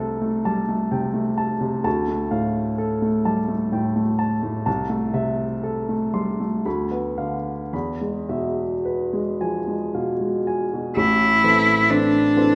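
This romantic classical fragment for cello and baby grand piano, cut from a longer piece, carries a solemn, elegiac mood in a flexible rubato triple metre. The warm, natural-sounding piano plays alone and up front for the first 11.0 seconds, laying down a sombre accompaniment that spans from deep bass to a high upper register. Its harmony moves from Am/C through Dm and back, then leans through Bdim/D toward an expectant E chord. At 11.0 seconds the cello enters on an A minor chord with a clear, smooth, bowed tone, carrying the melody in a narrow middle range with even vibrato from a single player. The cello sits louder than the piano yet has a faintly distant quality, and a recital hall reverb with a 1.5-second decay surrounds the duo with a soft, resonant glow.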